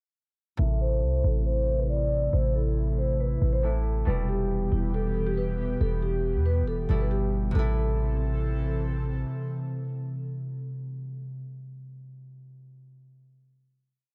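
A dark, hard-hitting half-time trap piece in which a boomy 808-style bass with long sliding sub-bass notes sits up front beneath a looping, ringing soft-mallet vibraphone melody with slow motor vibrato, fingerpicked concert harp chords in open voicing, and an airy, detuned breathy pad under chorus, all veiled by a filter sweep through the breakdown until the final chord from 7.5 seconds rings out in light reverb.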